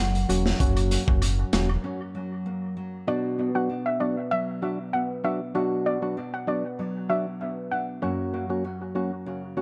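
Hypnotic and tough, this dancehall excerpt moves at 97 BPM in a straight 4/4, set in B harmonic minor and cut from a longer piece. A crunchy breakbeat kit, gritty and saturated with a tight kick, sits up front beside a deep sine sub bass with an octave layer, while a very quiet, close and dry cabasa and woodblock add texture; all three drop out by 1.8 seconds, leaving a break until 3.1 seconds. A fingerpicked nylon-string guitar plays full-bodied arpeggios throughout, joined from 0.3 seconds by a hollow, dark organ stab that pumps under sidechain and trails into dub echo and chorus. A glassy, crystalline FM bell flickers briefly in the background at the very start. When the chords move from F# to Bm at 3.1 seconds, a soft, round pluck carries the melody with a filter sweep, chorus and dub echo until 7.9 seconds, before the harmony returns to F#. The mix is echo-heavy with light reverb.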